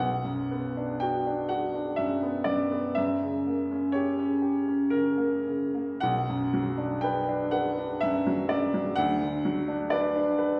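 In a rubato 3/4 sway between 52 and 66 BPM, this wistful, melancholic romantic nocturne in B minor, cut from a longer piece, sets a clear, woody, open upright piano up front, ranging from B1 to G5 and tuned to A4 = 444 Hz, as it moves through Bm, F#7b9 and back to Bm before settling on Bm/D by 9.0 seconds, all within a wet recital-hall reverb that places the listener further back in the room.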